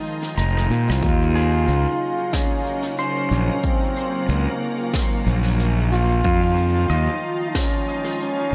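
Deep and meditative, this ambient dub passage, cut from a longer piece, drifts at an unhurried pace with a swung sixteenth-note feel. A mellow trombone carries the melody from the start, its light vibrato and smooth top roughened by vintage 12-bit sampler grit and trailed by dub echo, while a soft, organ-like pad holds sustained chords with a calm, detuned ensemble chorus and built-in reverb. Brushed shaker, rim click and snare, with a rolled-off top and their own dub echo, open with a short break and a drum fill before the electronic kick drum lands its punchy, overdriven thump at 1.0 seconds. From 0.4 seconds a round, fuzz-driven fingered bass sits up front as the heaviest voice, and a pedal steel guitar in the background plays gritty, echoing arpeggios with fingerpicks and slide. The harmony moves from Fm7 to a long stretch of Ebm9 before returning to Fm7 at 6.2 seconds, all within light reverb and a small-room ambience.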